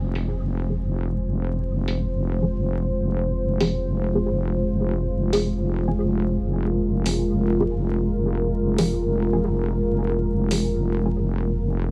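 A light reverb and a layer of vinyl crackle frame this heavy, brooding deep dubstep excerpt, which sits on a single F minor chord at 139 BPM in a half-time 4/4 feel. Up front from the start, a dark analog pad holds sustained chords with a slow attack, its detuned sawtooth and triangle tones and sub octave given chorus and a vintage 12-bit sampler grit. Beside it, a wobble bass anchors F1 with a sawtooth-and-sine tone that is saturated through tube warmth, compressed and touched with chorus, mellow yet weighty. From 0.2 seconds, muted, full-bodied dub chord stabs with a filter pluck and short decay sit in the background, colored by phaser, lush chorus and dub echo. An electronic hi-hat enters at the same point, layered and re-recorded in a small room with low-pass filtering, and drops out at 10.6 seconds while the pad, bass and stabs carry on.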